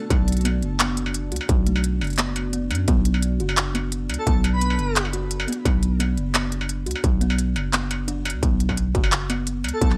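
A dry mix opens this dark, cinematic half-time drum and bass cut in B minor at 173 BPM, where a growling, buzzy 808-style bass with tube saturation and a distorted electronic kick drive beneath an industrial kit of handclaps, crisp hi-hats and struck metal, while a woody, buzzing kalimba plays delayed arpeggios, a deep, detuned analog pad with sampler grit and sidechain pumping holds chords in the background until 8.4 seconds, and an airy, dreamy lead with tape colour and delay surfaces briefly at 4.2 seconds.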